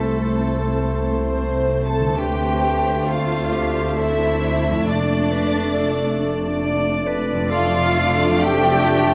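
Solemn and melancholic, this short passage cut from a slow romantic orchestral movement drifts in 3/4 at around 63-70 BPM with a flexible, rubato feel. A rich, lush violin section carries the melody from a distant position, while a second, background violin section adds a focused line with a smooth top. Airy flutes with a hollow character, a bright clarinet and a mellow cor anglais weave further lines in the background. Below them a warm bassoon and a very quiet, close viola section fill in the accompaniment, dark French horns hold tight sustained chords, and a fingerpicked concert harp rings softly with arpeggios. The bass rests on woody double basses, a soft-edged tuba and expressive cellos, all moving through A minor over C, D minor seventh at 2.2 seconds and D minor over F at 4.9 seconds. A moderate scoring-stage reverb surrounds the orchestra, and a layer of vinyl crackle lends the sound an aged patina.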